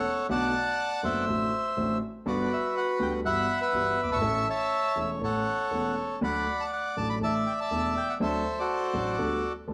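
A reedy, boxy bandoneon carries the melody from the very start of this passionate, elegant tango fragment, sitting up front and reaching from F#4 to D6. A concert grand piano joins at 0.3 seconds as accompaniment, its open tone and deep bass spanning E1 to A4 and standing just as close to the listener. The tempo is 122 BPM in 4/4, but the feel is rubato, so the pulse bends freely beneath the line. In D major, the harmony moves through Bm7, D7/A, Gmaj7 and Emadd9/G before settling on A, then turns to D, Asus4 and D7, ending on Gadd9/D as the piano stops at 9.7 seconds. A moderate large-studio reverb and a dark, warm production give the brief passage a shadowed, intimate glow.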